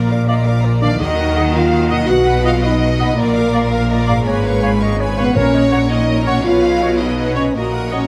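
Swashbuckling and determined, this cinematic orchestral passage in a rolling 12/8 is cut from a longer piece and plays straight through as a single section. A distant, intense violin section carries the melody with lush vibrato, while a mellow French horn section holds sustained chords that sit prominently beneath it, and clear cello and double bass sections anchor the bass with bowed weight. In the background, a smooth, even second violin section, a close, bright viola section and a dark, roomy solo clarinet add supporting lines, joined from 0.3 seconds by an airy, tongued flute ensemble and a solo cor anglais with light vibrato. A very quiet, thumb-plucked concert harp rings out arpeggios underneath, and close, dry timpani strokes land briefly at 1.0 and 5.4 seconds. The chords move restlessly between minor and major colours, and a moderate scoring-stage reverb gives the ensemble a spacious, cohesive bloom.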